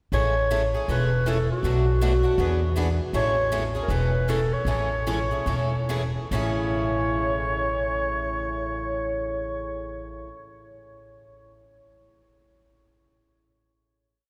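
Lively and swinging, this short, complete piece of jazz manouche sets a growling clarinet up front, its raspy, vibrato-laced song phrases riding over a thumpy, gut-strung upright bass that plays a two-beat root-and-fifth line. Two picked acoustic guitars fill in the rhythm: a bright, boxy swing-style guitar chops four to the bar with short accents on two and four, and a parlour-style steel-string adds a second rhythm part with audible finger squeak. The tune slows from 3.1 seconds, then settles onto a held final chord at 6.3 seconds that rings out in a lush cathedral-like reverb.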